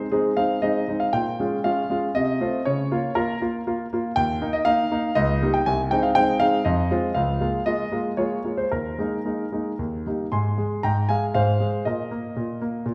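A clear concert grand piano opens alone in this elegant, graceful classical-period sonatina in A-flat major, moving in a flexible, rubato 3/4 at around 118 BPM and spanning a deep bass register up to its upper middle range. The natural-sounding instrument sits up front in a generous recital hall reverb. A stately progression through B-flat minor, F and E-flat harmonies comes home to A-flat by 10.3 seconds, where a brief new section begins before the harmony falls away at 11.9 seconds, the excerpt ending at 12.9 seconds.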